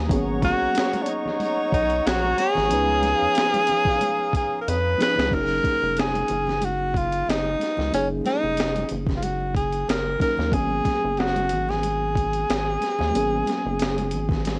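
A lightly swung, gritty boom bap sampler-style beat with a thumpy kick and high-tuned snare, coloured by cassette tape and joined by very quiet, damped congas, drives this sultry, soulful neo-soul R&B excerpt, where a rubbery, bouncy square bass and a reedy electric piano with fast tremolo support an up-front, breathy tenor saxophone playing jazz-style lines with vibrato and scooped notes, while a hollow, chorused pad holds flute-like chords until 5.3 s, in a home cassette recording with light reverb.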